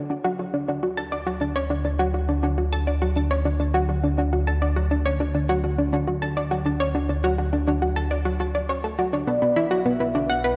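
A straight 4/4 sequencer pulse drives this cosmic, mysterious stretch of ambient space music, where an up-front analog pluck with a round, sub-octave sawtooth bite plays a chorused, delayed riff over a fat, detuned, saturated bass line. A mellow, horn-like synth lead with vibrato and lush chorus enters at 9.3 s as the harmony shifts from D to Bm, all steeped in wet plate reverb and the warbling pitch drift of worn cassette tape.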